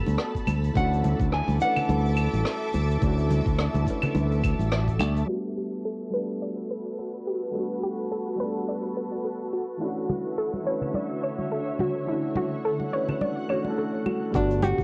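A punchy, up-front fingered electric bass with tube saturation anchors this sunny, relaxed sunset chillout excerpt at 106 BPM with a swung 16th feel, alongside a knocking electronic kick, brushed shaker, rim click and claves, damped congas in the background, a dark, boxy grand piano, a shimmering, detuned ambient pad and a fingerpicked classical nylon-string guitar melody with finger squeak, until the bass, kick and guitar fall away by 5.3 seconds, when a soft, round pluck enters with chorused arpeggios and filter sweeps move through the piano, pad and pluck until 14.3 seconds, where the bass, kick and guitar return, all within a hazy home-cassette sound.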